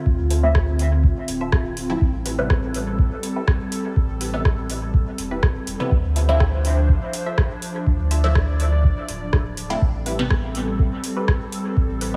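A cavernous haze of light room reverb frames this hypnotic dub techno excerpt at 123 BPM in D dorian, where an up-front, tape-warm deep electronic kick and a booming, tape-warm analog drum machine with metallic hi-hats and rim clicks in dub echo sit alongside a round, soft sub bass and an airy, breathy chorused pad that both pump against the sidechain, while two muted, detuned sawtooth chord stabs, one nasal with a moving notch and one dark, full-bodied and very quiet with phaser and dub echo, pluck over Dm7 and Am7 changes.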